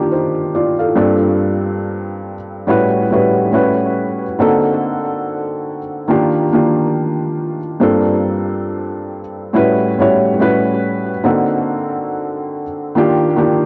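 A felt-muted upright piano plays alone, mellow and intimate with a short sustain, sitting up front through cassette tape coloring, a low-pass filter and tape echo. This melancholic, hazy hip hop fragment moves at 70 BPM in G minor with a light swing, cycling through Ebmaj9, Gm11, A13 and D7b9b13 across its 13.7 seconds. A wet booth ambience with a short decay and the home cassette recording add to the hushed, lo-fi atmosphere.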